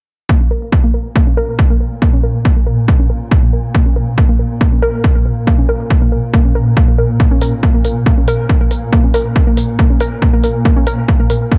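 A punchy, tape-warm kick drives a straight 4/4 pulse from 0.3 s in this driving, industrial peak-time techno passage cut from a longer piece. A warbly, dusty, detuned pluck riff with chorus and delay pumps with sidechain compression, while a filter sweeps across the synth arpeggio sound and a swarming, ring-modulated drone enters at 1.0 s with its own reverb and sidechain pumping. Smooth, up-front hi-hats join at 7.4 s, with the drums placed in a small, dry room.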